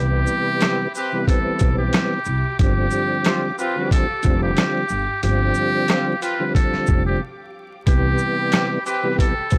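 Boom-bap hip-hop with a soulful mood, cut from a longer piece: a buzzy, breathy muted trumpet carries a jazz-style melody over a lightly overdriven tonewheel organ with key click and slow rotary speaker, a woody pizzicato upright bass, and compressed, gritty sampler drums with a thumpy kick that enter at 0.3 s, while tight, bright trumpet-section stabs with tape echo and very quiet finger snaps join at 0.6 s, distant, lush bowed strings sit far beneath, a brief break arrives at 7.2 s, and the dry recording carries transformer saturation and vinyl crackle.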